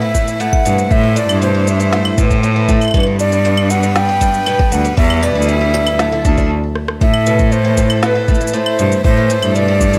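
A breathy, mellow flute sings the melody through a touch of delay over a shimmering, octave-doubled twelve-string guitar picking gritty, sampler-worn arpeggios, a clear bowed cello on the bass line and a distant, bright string quartet holding chords, while overdriven electronic kick, shaker, claves, woody snare and rim click drive this intimate, autumnal folktronica excerpt in a small, lightly reverberant room, breaking off at 6.5 seconds for a brief drum fill before the opening chord returns at 7.0 seconds.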